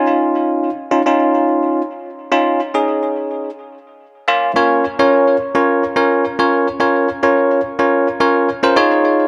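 A bell-like tine electric piano plays alone in this short pop excerpt in Bb minor at 107 BPM, its bright, clean tone sitting direct and up front with tape echo trailing behind it. A filter sweep drives a build-up over the first 4.6 seconds before the drop lands, the harmony moving from Dbadd9 to Bbm and back to Dbadd9 at 8.8 seconds. The echo-heavy, high-passed mix is bathed in a wet spring reverb and digital ambience, framing the confident, energetic passage.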